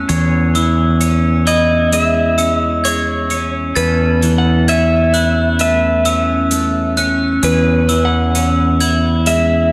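A growling, overdriven fingered electric bass holds E2 up front in this hopeful, cinematic post-rock excerpt at 65 BPM in E major, where sparkling brass-mallet glockenspiel and twangy, clean twelve-string electric guitar arpeggios ring through slapback echo and analog delay, a bright pedal steel guitar sustains fingerpicked slide chords with volume swells in the background, an acoustic hi-hat plays in a big room, and from 1.5 s a slightly broken-up electric guitar through a small old amp carries the melody, also with slapback echo, as the harmony moves between E6 and Aadd9/E in a lush hall reverb with a big arena sound.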